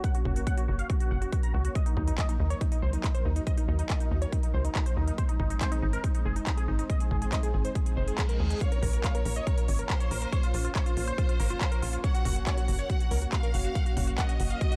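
A punchy electronic kick drum sits up front in this uplifting trance excerpt at 140 BPM, driving a bittersweet, emotional passage in straight 4/4. A detuned supersaw stab carries the melody from Eb4 to Bb5, its filter-plucked attack colored by phaser, low-pass filtering, delay and sidechain pumping. Underneath, a tight, nasal sequencer bass pumps between Gb1 and Eb2, while a layered dance kit adds crisp hi-hats and handclaps in a small room. A reverse cymbal sounds in the background from 8.0 seconds, leading into a lush, bowed violin section with vibrato that joins at 8.6 seconds as a second line with delay. The chords move through Gb, Ebm, Ab and Bbm in a dark, warm production with little reverb.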